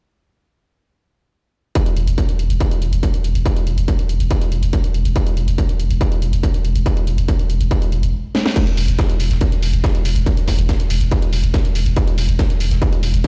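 A straight 4/4 pulse at 141 BPM drives this hypnotic, relentless peak-time techno cut, where from 1.8 s a distorted, layered kick sits up front, joined at 2.0 s by a deep, thick, saturated sine sub bass on E1 with sidechain pumping and a low-pass filter, while a techno kit of cracking snare, crash and pumping hats rides beneath; a drum fill lands at 8.3 s, and from 8.6 s an airy, polished acoustic kit with ride and medium-tuned snare adds a high-passed layer in the background, the whole mix sounding as if played on a big sound system in a bare stone room.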